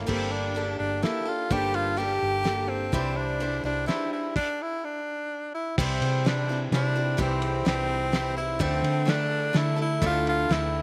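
Dry with little reverb, this dusty, wistful folk-rock and heartland-rock fragment in 3/4 at 127 BPM puts a clear, vibrato-laden tenor saxophone melody with slapback echo up front over a bright, boxy parlour acoustic guitar, a round, punchy hollow-body electric bass and a muffled, cloth-damped drum kit with a fat snare and gritty saturation in the background, while a mellow, vintage grand piano with its own slapback echo plays over Gmadd9 and Cadd9 until 4.3 seconds, just before a stop at 4.4 seconds and a move to C and Dmadd9 from 5.8 seconds.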